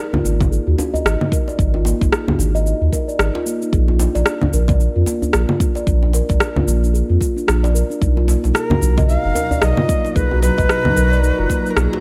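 Set in a small room, this excerpt of mystical organic downtempo moves at 112 BPM in a swung 4/4, with a ringing steel tongue drum played with soft rubber mallets tracing arpeggios through a digital delay over overdriven electronic congas, cabasa and rim click, a hard-handed acoustic djembe, a deep layered electronic kick and a round, up-front sine sub bass that pumps. The harmony moves from Ab5 to Bb at 3.7 seconds and Bmaj7 at 8.0 seconds. At 8.5 seconds an airy, woody cedar flute with vibrato, chiff and a delay takes the melody, joined by a cloudy, evolving granular pad drifting in the background.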